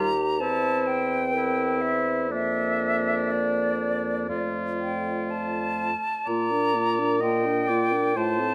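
A flute, oboe, clarinet, French horn and bassoon sound together from the start of this brief fragment of a serene, lyrical classical slow movement for wind quintet, played with supple rubato: the airy, bright flute sings the melody up front with vibrato and a soft attack over the oboe's clear second line, the clarinet sits in the background, a dark, smooth-topped horn fills the middle, and a distant, roomy bassoon carries the bass with light vibrato, the quintet set in a moderate recital-hall reverb as the music moves into a new section at 6.3 s.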